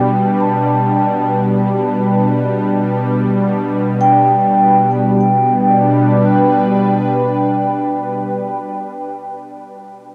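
A smooth, detuned sawtooth pad sits up front with soft-attack sustained chords treated with chorus, its tone shaped by a moving notch, before it stops at 8.7 seconds in this weightless, luminous ambient excerpt in G major at a slow 50 BPM in 4/4. A close-miked vibraphone played with soft mallets and the motor off adds mellow, metallic, ringing arpeggios high in its range, carrying a tape echo and continuing to 10.1 seconds. The whole is bathed in a huge, wet reverb and has a cassette tape character.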